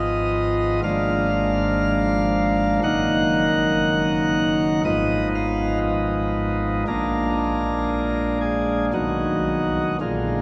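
A solo chamber organ opens on a full principal chorus with a distinct chiff and chamber voicing, spanning Gb1 to Gb5 in a dark, solemn classical chorale at a rubato 60 BPM in 4/4, tuned to A4 = 439 Hz, its sound placed up front yet heard from further back within a wet cathedral reverb as the harmony moves from Fm7b5/Ab through Bb7 and Ebm/Gb to rest on B at 8.9 seconds in this brief passage cut from a longer piece.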